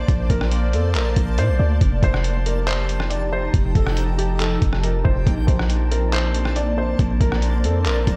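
A half-time 4/4 groove at 139 BPM drives this dreamy, floating stretch of atmospheric cloud-rap in Bb major, built on a compressed, pitched-down, muffled trip hop sampler-style kit with a thumpy kick, handclaps, hi-hat and rim click that enters at 0.1 seconds and sits up front. Beneath it, a deep, boomy 808-style bass with a fast attack and decaying sine tone, edged by a noise layer, holds the low end just as prominently. A soft, muted upright piano carries the melody with an intimate, mellow touch, its short sustain and audible action noise trailed by delay. Around it, a shimmering, ethereal pad with an octave-up shimmer and granular, detuned unison sustains the chords with chorus, reverb and sidechain pumping, while a reversed, swelling texture hovers in the background. At 5.3 seconds, as the harmony returns from F9 to Bbmaj9, a very quiet concert harp adds ringing, fingerpicked arpeggios, all set in light reverb in what is cut from a longer piece.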